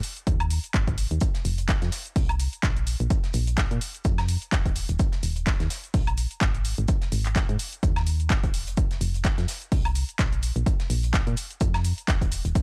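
A lightly swung sixteenth-note groove drives this energetic, soulful piano house excerpt: a punchy, tape-warm analog kick sits up front beside a round, dark FM bass that pumps against it, while a layered electronic kit of handclaps, hats, shaker and woodblock runs throughout and a very quiet acoustic kit with a medium-tuned snare and rolled-off top slips in at 1.2 seconds, all in a dry, gritty small room.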